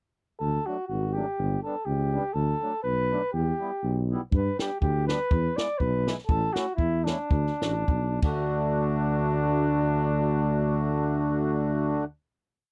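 A lightly swung two-beat oompah bounce drives this short, jolly alpine dance-band piece: a mellow tuba with a touch of tube saturation sets root and fifth on the main beats, while a reedy, dark accordion fills the off-beats with smooth triad chords. Over them a soft-edged flugelhorn with light vibrato sings a classical-style, motif-based melody, and a compact cocktail drum kit with a high-tuned snare, tight kick and dusky cymbals joins the groove at 4.3 seconds. The band slows from 6.3 seconds before landing on a final hit at 8.5 seconds, heard in a close 1970s-style studio sound with little reverb.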